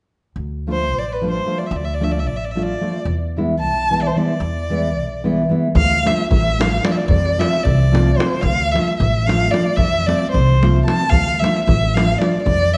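A woody, pizzicato upright bass opens this restless Balkan wedding-band excerpt at 0.4 s, with the bowed violin and fingerpicked nylon-string guitar joining at 0.7 s over a lopsided 5/8 metre with a straight feel. The solo violin sits up front, carrying the virtuosic melody with vibrato, portamento, a soft attack and a smooth top, its expressive line trailed by a slapback echo. Beneath it, the guitar gives dark, full-bodied classical accompaniment, while the steel-strung bass anchors the low end. The first passage moves between D minor and E, and at 5.8 s a deep davul enters as the harmony shifts between D minor and F. The whole band is bathed in a lush recital-hall reverb that lends the playing a spacious, ringing glow.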